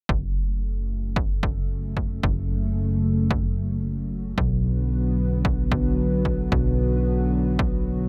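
The lush unison pad fills this brief synthwave excerpt, holding sustained chords built from detuned sawtooth and square waves with a slow attack and long release, its warbling chorus and vintage 12-bit sampler grit pulsing under sidechain pumping. Beneath it, a fat analog bass with a fast attack and decaying notes anchors the low end, while a filter sweep moves across both the bass and the pad from 0.1 to 8.1 seconds. A punchy, overdriven electronic kick drum drives the straight 4/4 pulse at 112 BPM and drops out at 7.7 seconds. The harmony rests on F# minor before shifting to B minor at 4.4 seconds, giving the piece a nostalgic, nocturnal mood. Bright 1980s-style digital production places every part up front inside a lush hall reverb.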